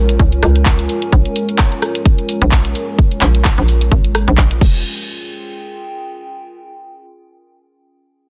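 Bouncy and swaggering, this short bass house cut at 129 BPM in F minor sets a hollow, knocking FM bass with a filter sweep and a tight, tape-warm electronic kick up front beside a layered garage kit of crash, handclaps, hi-hat and rim clicks, while a dark, detuned analog pad holds moody sustained chords from Bbm7 and a warbly, lo-fi tape-like pad fades out before lingering alone until 6.7 seconds, with the bass and both pads pumping against the kick in a dense, heavily limited digital mix.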